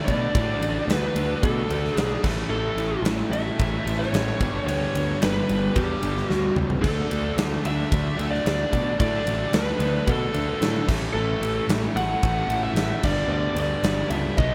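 A huge arena drum kit sits up front in this powerful, anthemic hard rock excerpt at 111 BPM, its punchy kick, medium-tuned snare, bright cymbals and toms drenched in gated reverb, with fills at about 6.3 and 14.4 seconds. A dark, overdriven lead guitar through a small cranked amp carries the melody over a growly fuzz bass and three picked overdriven riff guitars: a biting one in the background, a very quiet cranked stack and a double-tracked raw garage part. A clean tonewheel organ on slow rotary speaker holds very quiet sustained chords as the harmony moves through D, A and G, all set in a lush hall reverb with 1980s-style digital production.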